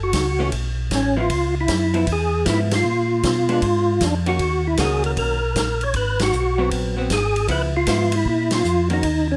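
Close, detailed microphones and light reverb frame this soulful, greasy soul jazz organ trio excerpt with a swinging 4/4 feel, where a fat, lightly overdriven tonewheel organ with key click and percussion carries the melody through a slow rotary speaker and chorus vibrato, a round, dark second organ holds down the bass, a vintage acoustic drum kit with a punchy kick keeps time on hi-hat, ride, snare and kick, and a clean, compressed hollow-body electric guitar adds shadowy picked accompaniment, with band accents striking at 2.7, 6.1 and 8.5 seconds over chords such as Gbm7, Db7#9 and Ab7#9.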